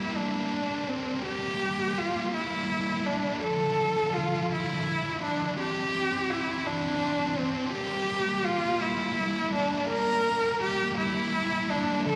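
A lush hall reverb and a big arena sound surround this brooding, cathartic rock fragment, cut from a longer piece. At a slow 55 BPM in 6/8 with a straight feel, it sits in G dorian and moves through Gm, Dm, Cadd9/E and back to Gm by 7.7 seconds. A bowed solo cello carries the melody from C4 to Bb4 with vibrato and a bright, focused tone, touched by slapback echo and digital delay. Beneath it, a sludgy, dark electric guitar, overdriven, picked and double-tracked, grinds out a riff between D3 and C4 with its own slapback echo. Both parts sound from the opening to 12.2 seconds, the whole passage working as a single build-up.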